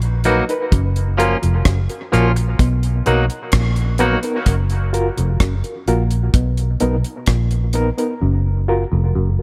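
Dub reggae at a relaxed 64 BPM in F# major, this short cut from a longer piece feels spacious and laid-back, its echo-heavy mix set in a small room with light reverb. A deep, dry drum kit sits up front with a tight kick, hi-hat and rim click, playing until 8.2 seconds, when the drums drop out for the final stretch. The foam-muted fingered bass is dark, round and punchy, also up front, while a mellow, stringy muted clav plays a low riff through phaser and dub echo. An overdriven reed electric piano adds gritty stabs with fast tremolo and dub echo, and a clean, twangy electric guitar provides picked accompaniment that ends at 4.2 seconds. The harmony moves between Bmaj7 and F#maj7, closing on an open F# chord.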